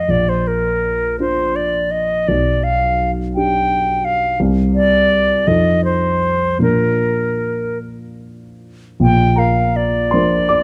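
A silver concert flute and a dark grand piano begin together at 0.0 seconds, opening a serene romantic classical duo in 6/8 with a flexible, rubato feel. The flute carries the melody in a pure, bright, straight tone with a soft attack, sitting close and up front. Beneath it the piano supplies the accompaniment with a mellow, vintage color, deep bass and short sustain, ranging from the low register up into the treble. The harmony moves gently through Bb, G/B, C5 and F7 before settling back on Bb, and the opening phrase returns at 9.0 seconds. Light reverb and close, detailed microphones keep this warm excerpt of a longer piece intimate, and both instruments play through to its end at 10.6 seconds.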